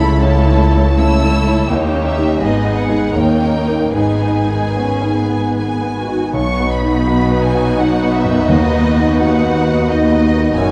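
A dark, warm production set in a moderate concert hall reverb frames this brief, tragic and brooding passage from a romantic classical movement for piano and orchestra, moving in a rubato 3/4 at roughly 72-90 BPM. A clear, polished concert grand sits up front carrying the melody with a deep bass, while a lush, expressive violin section also sings melody high above with close, vibrato-rich bowing. A second, more focused violin section holds an inner line, the violas fill in expressive accompaniment, and a smooth-topped cello section joins an even, smooth double bass section to anchor the low end. The music begins in G# minor over restless chords and turns toward B major at 6.4 s, where a mellow tuba enters softly in the background to reinforce the bass. At 8.5 s very quiet timpani, played with hard mallets, add an articulate touch before the passage breaks off.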